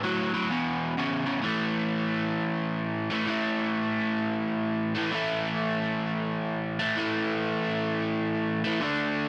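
Up front and compressed, with a moderate spring reverb and digital ambience, this gritty, swaggering rock excerpt features a bright, double-tracked, overdriven electric guitar playing alone with a swung feel, moving over A5 and E5 power chords before settling back on A5 at 1.4 seconds.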